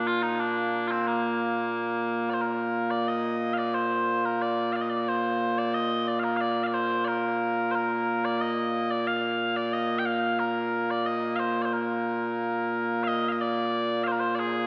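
Scottish traditional pipe music, stirring and ceremonial, moves at 90 BPM in a straight 2/4 in Bb major, heard as a brief cut from a longer piece. A single set of small bagpipes plays solo throughout, mellow and sweet in tone, sounding continuously and up front. The pipes ring through the long, wet reverb of a church or concert hall, with its 2.0-second decay lending the tune a grand, ceremonial air.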